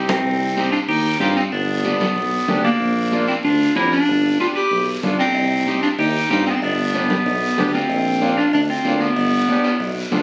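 A driving, fiery cumbia in straight 4/4 at 189 BPM, this fragment of a longer piece rides on a mellow tuba bass with vibrato and a punchy attack, a reedy accordion accompaniment with a boxy small-room sound, and high-tuned congas struck with hard hands and ringing in the background beside a raspy, distant guiro. Up front, a bright clarinet carries the melody in a classical style, joined by a clean, picked electric guitar second line that is compressed and twangy and sits further back. Ringing metal-shell cowbell and timbales join at 5.3 seconds, heard distant as if in a large room. In C harmonic minor, the harmony cycles twice through Cm, G, Bb and G7, with a drum fill at the start and another from 9.6 seconds to the end. A phone recording in the room, with moderate studio reverb and vinyl crackle, frames the whole.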